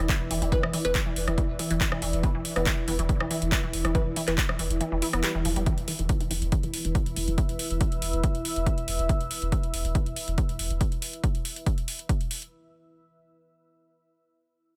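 A punchy, up-front electronic kick drives this intense, industrial peak-time techno excerpt alongside a techno kit of handclaps, rim click and metallic hats, with a squelchy resonant blip pluck riff, muted nasal dub chord stabs, a round sub bass, a swarming granular drone and a moody dark pad all pumping under sidechain, while the kick drops out from 4.8 to 5.7 seconds before a filter sweep on the synth arpeggio sound.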